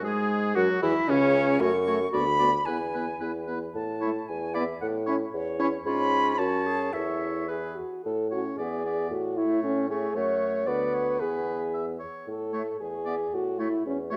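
A quick, graceful and cheerful classical-period wind quintet movement in A major at 113 BPM in 2/4 with a rubato feel, cut from a longer piece, where an airy, expressive concert flute with vibrato carries the melody over a warm oboe second line, a smooth-topped French horn and a soft-attacked, distant clarinet in accompaniment, and a dark bassoon bass sitting up front, all five playing throughout the 14.2 seconds in a moderate recital-hall reverb with a dark, warm production.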